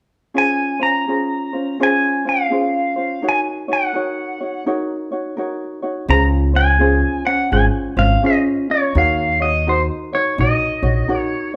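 A mellow, thumb-plucked acoustic ukulele opens this languid, sunny Hawaiian excerpt at 0.3 s, quickly joined by an up-front electric pedal steel guitar carrying the melody with fingerpicks, slide and volume swells, its tone clean, compressed and twangy. The relaxed 84 BPM swing in 4/4 moves between Dbmaj7 and Ebm7 in Db major, and at 6.1 s a dark, growly pizzicato upright bass with steel strings enters in the low register. The band plays live together in one room, bathed in a moderate large-studio reverb.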